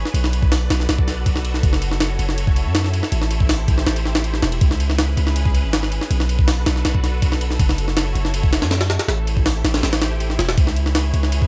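Drum and bass with a jungle flavour, atmospheric and nostalgic, this short cut from a longer piece rides a sampler-style drum kit that sounds pitched up, gritty and compressed, with a thumpy kick, medium-tuned snare, hi-hat and ride cymbal sitting up front with studio ambience. Alongside it, a deep, sine-like 808-style bass holds long, mellow notes with tube saturation, while a soft, silky string machine warbles through ensemble chorus, sustaining slow-blooming chords that cycle through Bm7, F#m7, Am7 and C#m7. The mix is dry and close, with the drums entering at 0.1 seconds and all three parts carrying through to 11.5 seconds.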